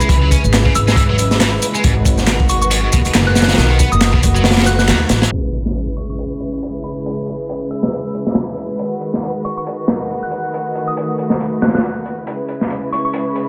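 A crunchy, swung breakbeat kit with a tight kick and rolled-off top drives this gritty, energetic 138 BPM breaks cut in C# minor, where woody pizzicato upright bass, a double-tracked, scooped high-gain guitar riff and background shaker and handclaps drop out after a band accent at 4.9 s, making way for an up-front impact at 5.3 s, while bowed sul tasto strings with 12-bit grit and sidechain pumping hold C#m7, G#m7 and B7 chords beneath a soft, pure FM synth bell melody carrying chorus, phaser, old-record character and tape echo.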